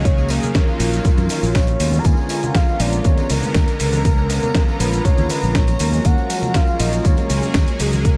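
Cosmic and groovy, this short nu-disco excerpt moves at 120 BPM in a straight 4/4, with chords drifting from Ebm9 to Db7b9 and settling on Gbmaj13 at 5.8 seconds. A punchy, layered electronic kick sits up front, and a gritty, tape-warmed sampler-style kit of hi-hat, shaker and medium-tuned snare enters alongside it at 0.1 seconds, together with bright, saturated tambourine and congas tucked into the background. Underneath, a round fingered electric bass carries the low end with a direct, amped tone. A smooth, detuned sawtooth analog pad with a soft attack and a moving notch breathes with sidechain pumping, chorus and analog delay, and a dark, intimate string section, bowed sul tasto with light vibrato, pumps along quietly behind it. On top, a full octave-layered synth lead blending triangle, sawtooth and sine with a sub octave sings the melody through chorus, tremolo, vibrato and analog delay, all set in light reverb and digital ambience.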